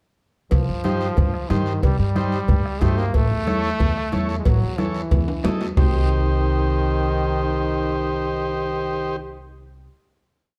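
Fiery and passionate, this short cumbia piece moves on a straight groove: a soft-beaten bombo, background congas, a ringing cowbell and timbales, and a raspy guiro, under a woody, growly pizzicato upright bass playing a cumbia figure. A buzzy vintage combo organ adds rhythmic triad chords with light vibrato, while a brilliant, punchy, close-miked trombone answers in the melody's rests. After a drum fill, the percussion stops around 5.8 seconds and the band holds a final chord in a dark, moderately reverberant large studio, with the bass ringing last until 9.9 seconds.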